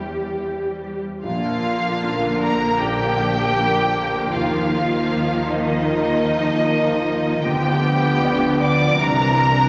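Tender and moving, this excerpt from a cinematic film score unfolds with an unhurried, rubato feel. A lush violin section carries the melody up front with a focused, vibrato-rich tone, while violas and a close, bowed cello section supply the lower harmony and bass in the background. Beneath them, a felt-muted upright piano adds a soft, intimate accompaniment, its thick felt and audible action noise giving it a dark, mellow character, and a very quiet concert harp contributes ringing fingerpicked arpeggios. At 1.2 seconds a French horn section joins with tight, classical-style sustained chords and a dark, woody double bass section deepens the low end, followed at 1.3 seconds by a second violin line with a smooth, even sound. The harmony moves from Cadd9/E through Bb, Ebsus2 and G7/D before settling on Cadd9, all bathed in a wet scoring-stage reverb.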